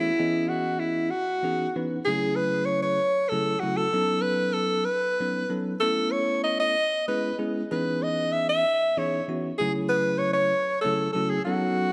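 A clear alto saxophone carries the melody up front, singing a vibrato-laced jazz solo in 6/8 over a bell-like tine electric piano that plays bright, clean, direct accompaniment across rich ninth chords such as C#m9, B9 and Amaj9. The mood is driving and funky, with a straight feel in this short cut from a longer piece. A glossy 1980s-style digital sheen and a lush plate reverb give the recording its polished, spacious finish.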